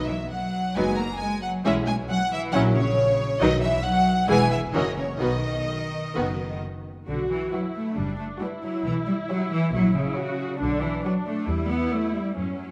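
Quick, graceful classical-period string orchestra movement at 135 BPM in 4/4 with a lively rubato feel, where an up-front violin section sings a smooth, even melody over a second violin line, a focused viola accompaniment, an intense cello section and a distant, lush double bass, all bowed with vibrato in a moderate concert hall reverb with a dark, warm production as B major turns to B minor at 7.1 seconds.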